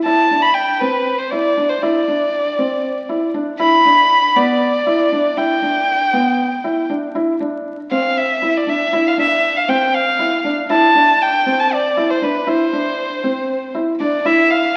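A dark, intimate violin carries the melody from the first moment, its airy, sul tasto bow and light vibrato sitting close and boxy alongside a felt-muted upright piano whose soft arpeggios come with audible action noise. This hypnotic, urgent contemporary instrumental moves at 237 BPM in 7/8, circling through Cadd9 and Em7 before stopping near 14.8 seconds, as it is cut from a longer piece. A long scoring-stage reverb surrounds both instruments, and the whole recording carries the crackle of a very old 78 rpm record.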